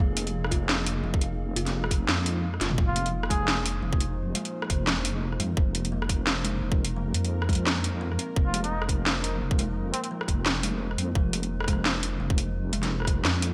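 Cinematic and spacious, this half-time drum and bass excerpt moves at 172 BPM in F minor with a 16th-note swing, resting on an F minor chord. A deep, wobbling sawtooth bass and a tight electronic kick sit up front with a kit of cracking snare, metallic hats, rim clicks and toms bathed in gated reverb, which enters at 0.2 seconds and plays a fill at 2.6 seconds. Behind them, a moody, evolving pad pumps with gritty 12-bit sampler texture, a woody kalimba arpeggiates through digital delay, and an eerie, nasal FM drone warbles, while a veiled, breathy cup-muted trumpet plays a jazz-style solo phrase from 2.9 seconds, all set in light reverb with bright 1980s-style digital production.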